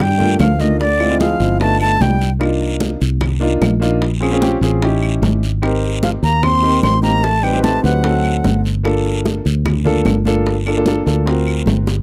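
A breathy, bright concert flute carries the melody up front in this sultry, sophisticated Afro-Cuban jazz fragment, shadowed by a whispered, scooped-note trombone in the background, the two appearing together in short phrases from 0.0 and again from 6.0 seconds. Beneath them a round, punchy fingered electric bass and an intimate concert grand piano, with its audible action noise and short sustain, move through rich extended minor and altered chords. Ringing congas, tight high-tuned bongos, woody claves and a raspy guiro fill out the percussion, all captured in a dry, close 1970s-style studio sound, with a drum fill at 11.9 seconds.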